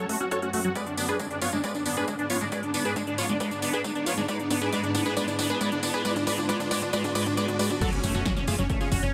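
A huge, detuned supersaw carries the melody up front in this driving, bittersweet uplifting trance passage at 136 BPM, pumping under a low-pass filter and digital delay while a squelchy, resonant acid bass runs arpeggios through a filter sweep and a shimmering, ethereal pad holds sustained chords over F#m and G#dim. Overdriven big-room drums with a punchy snare, crisp hats and tambourine play a long fill beneath a background riser and a roomy electronic kick through the build-up. At 7.8 seconds the drop arrives with an impact, and a round, dark FM bass enters at 8.0 seconds to anchor the return to F#m.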